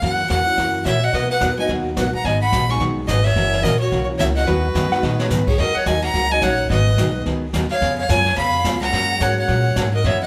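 A swinging 4/4 pulse at 216 BPM drives this playful western swing excerpt, with brushes on a high-tuned snare, dark cymbals and a boomy kick sitting in the background beneath a woody, thumpy pizzicato upright bass. A clear, earthy bowed fiddle carries the melody up front, while a bright, full-bodied jumbo acoustic guitar is picked as accompaniment and a boxy upright piano fills in softly behind. From 0.9 s a breathy bamboo pan flute, close-miked with vibrato and a chiffy soft attack, adds a second line. At 4.9 s a clean, compressed electric lap steel slides in briefly, just before a drum fill at 5.0 s turns the passage toward its second half. The chords move through sevenths, sixths and an add9, and the whole band sounds as if playing live together in one large studio with moderate reverb.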